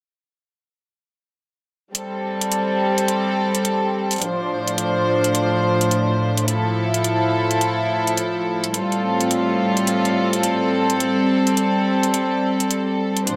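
Bathed in a moderate plate reverb with a small-room ambience, this swaggering, funky glitch hop excerpt has a swung sixteenth-note feel. A layered, overdriven electronic hi-hat, re-recorded in a small room, comes in at 1.9 s, and a bowed studio string section follows at 2.0 s. The strings sit up front, rich and floating with a soft attack and pure tone, sustaining chords that move from Am7 through Dm7/A, Fmaj7/A and G9sus4/A before returning to Am7.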